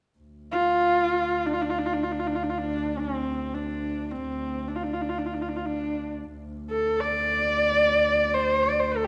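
A wet recital-hall reverb surrounds this brief, solemn fragment of Mongolian folk music, which carries a windswept feel. A single dark double bass opens at 0.2 seconds with a low bowed drone, played sul tasto with an airy bow, a soft attack and light vibrato, and it sits close and intimate beneath the tune. At 0.5 seconds one player's horsehead fiddle joins with the melody, bowed on horsehair strings and placed up front. Its husky, focused tone has a smooth top, and vibrato and portamento shape the line as it moves between C4 and D5. The fiddle stands well above the quiet bass drone, and both parts sustain together until the fragment breaks off at 9.1 seconds.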